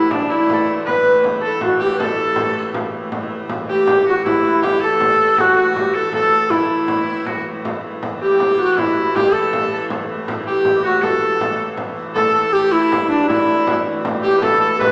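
An ancient, driving medieval dance in 6/8 moves at 106 beats per minute, counted in dotted quarters with a straight feel, heard as a short section cut from a longer piece. The alto flute carries the melody up front, airy and expressive with vibrato and tongued notes, while an edgy folk-style shawm with a soft attack and a bright, fingerpicked Celtic harp ringing in the background both play second lines alongside it. A rich hurdy-gurdy, close and nasal with a reedy, wheel-bowed tone from a single player, holds a low drone throughout. A small frame drum, played with hard hands and sounding vintage and band-limited, joins at 0.1 seconds and keeps the dance moving. The whole ensemble sits in a wet recital hall reverb with a small-speaker quality, and the piece passes through three sections, the last beginning at 12.2 seconds.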